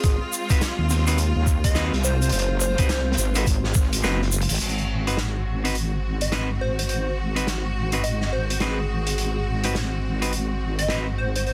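A dense, heavily limited modern mix with light reverb frames this gritty, playful glitch hop excerpt, swung on the sixteenths and opening on a drop where a pitched-down, thumpy electronic kick plays until 3.9 seconds and a grainy tube shaker until 4.6 seconds. A heavy, detuned wobble bass with chorus sits up front alongside a vintage drum kit of dark cymbals, hi-hat and a medium-tuned snare in a small pumping room, while a lush bowed string section holds sustained chords with sidechain pumping. A catchy square-wave unison lead with tape echo carries the melody, and a clean, fingered electric guitar adds stabs with pumping and echo from 0.5 seconds.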